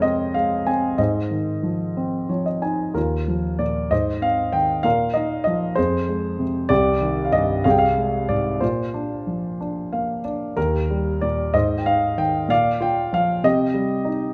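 A dark concert grand piano carries this lyrical classical solo, its mellow, vintage tone placed up front and intimate enough that the noise of its action can be heard. Cut from a longer piece, the music moves in 6/8 with free rubato, giving it a reflective, shadowed mood. The opening phrase begins on F minor harmony and moves to Ab6 before a brief piano fill at 2.0 seconds leads into a longer passage that begins at 3.0 seconds, wandering through suspended and added-note chords. A second fill arrives at 9.6 seconds, after which the harmony resolves toward Eb, Ab and Bb before coming to rest on C minor. The smooth, deep bass of the instrument is framed by a moderate recital-hall reverb that gives the playing a gentle sense of space.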